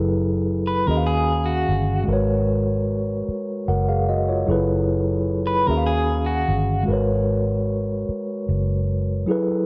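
R&B in a slow 6/8 at 50 BPM, this short excerpt cut from a longer piece has a late-night, sultry mood centered in G# dorian. A mellow tine electric piano carries the accompaniment up front through its built-in speakers, moving through lush minor eleventh chords, F#m11, D#m11 and G#m11, in a cycle that repeats. Beneath it, a vintage muted fingered electric bass sits low, its foam-muted tone dark, round and punchy. A clean, picked electric guitar enters at 0.7 s with a compressed second line, its tremolo adding a gentle shimmer before it drops out at 6.8 s. A moderate plate reverb opens up the space, while worn cassette tape character gives the recording a warbly pitch drift and a nostalgic, hazy feel.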